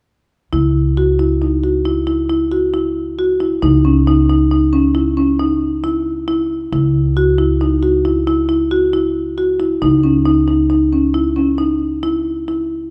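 Restless and hypnotic, this excerpt of contemporary instrumental chamber music moves in an uneven 7/4 at 136 BPM with a straight feel, centred in C# minor and tuned to A4 = 439 Hz. A marimba played with medium mallets on padauk bars spins arpeggios between C#4 and F#4, its tone woody, full and close-miked, sitting dry and up front as the most prominent voice. An upright bass, plucked pizzicato on steel strings, holds a dark, thumpy low C#2 beneath it, also up front but a little softer than the marimba. Both parts play together from 0.5 to 12.9 seconds over a single C#madd9 harmony, so the passage stays fixed on one chord and draws its trance-like pull from the lopsided meter. A moderate recital-hall reverb of about 1.5 seconds gives the recording the sense of a church or concert hall around the two instruments.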